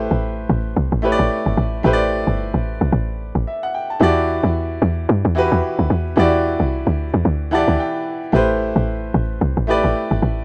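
A swung sixteenth-note groove in 4/4 drives this hypnotic, late-night amapiano excerpt, cut from a longer piece, with a tight, punchy log drum bass sitting up front, its FM tone edged with a noise layer and a fast attack that then decays. A clear, boxy grand piano with short sustain carries the accompaniment over a move from Am9 to Em9 and back, adding a brief fill between 7.3 and 8.3 seconds. Light reverb and a touch of studio ambience frame a rough home-demo mix.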